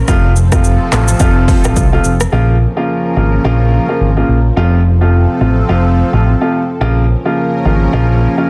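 A lush, thick pad of detuned sawtooth and square waves opens this mellow, smooth afrobeats excerpt, its slow attack and long release giving sustained chords a bright shimmer through chorus and phaser. At 0.1 seconds a clear grand piano, a round, dark fingered electric bass and a punchy, overdriven deep house drum kit arrive together, the kick, handclaps, hi-hat, rim click and shaker carrying a 58% swing on the sixteenths at 107 BPM in 4/4. The drums drop away at 2.3 seconds, leaving the present piano accompaniment and the amped bass up front beneath the sustained pad. The harmony in Bb harmonic minor moves between F and Bbm, with the change to Bbm marking the start of the longer second section. The sound is dense and heavily limited, set in a digital ambience.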